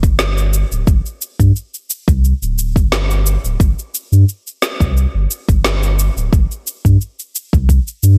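A dry clip of organic downtempo sets a hypnotic, earthy mood at 88 BPM in 4/4, with a light 53% swing on the sixteenths. A round, sine-like sub bass with a fast attack and long sustain sits up front, ranging from D1 to G2, beside a deep, layered electronic kick that drops out at 7.8 seconds. Further back, a produced electronic shaker and woody snare add texture throughout.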